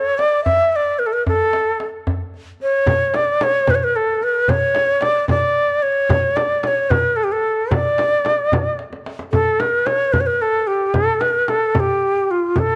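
Persian modal ensemble music in D avaz esfahan, hypnotic and longing at 74 BPM in a straight 6/8, with an airy, reedy ney carrying the melody up front with vibrato and tongued notes, a deep tombak struck with hard hands beneath it, and a small, dry frame drum played with soft hands joining at 2.9 seconds, while a drum fill at 8.8 seconds leads into a new section, all set in a moderate echo-chamber reverb in a cut from a longer piece.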